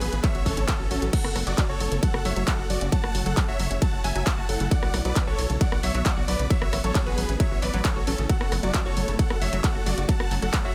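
A straight 4/4 pulse at 134 BPM drives this emotional, bittersweet slice of uplifting trance in F# minor, with an overdriven, up-front electronic kick entering at 0.2 s over a tape-warm analog drum machine playing crash, ride, hi-hat, handclaps and rim clicks. Beneath it, a tight, driving sequencer bass mixes sawtooth and square waves with a plucky filter and saturation, moving between F#1 and B1. The melody rides on huge, lush supersaw chords, detuned and bright, carrying delay and pumping against the kick along with the other sustained parts. Tucked in the background, a brilliant concert grand piano traces a second line in the upper register with digital delay, while a sequenced sawtooth synth spins evolving, mellow arpeggios, and a shimmering, ethereal pad with slow attack, granular texture, chorus, phaser and its own reverb holds sustained chords. The harmony moves from Aadd9 to F#m, then Bm and back through Aadd9 to F#m, all in a dry, close mix that stops just short of 11 seconds as part of a longer piece.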